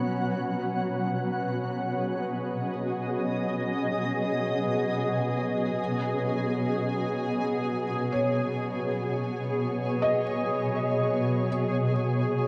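Serene and peaceful, this ambient passage in B major drifts in free time, cut from a longer piece and lasting about 12.5 seconds. A shimmering, ethereal pad sits up front from the start, holding sustained B6 chords with an octave-up shimmer, granular texture and slow attack, softened further by chorus and its own reverb. Beneath it, an evolving analog drone built from sawtooth and pulse waves hums in the background, coloured by chorus and phaser and fading in over the first 11.5 seconds. A felt-muted upright piano enters at 0.6 seconds with soft, intimate arpeggios in a narrow upper-middle range, its thin felt and audible action noise giving it a close, mellow character, while tape echo trails each note. The piano also fades in before it stops at 11.9 seconds, shortly after the music moves into a brief second section at 11.5 seconds. The whole is bathed in a huge, wet reverb with an 8.8-second tail, placing it in a vast, echoing space.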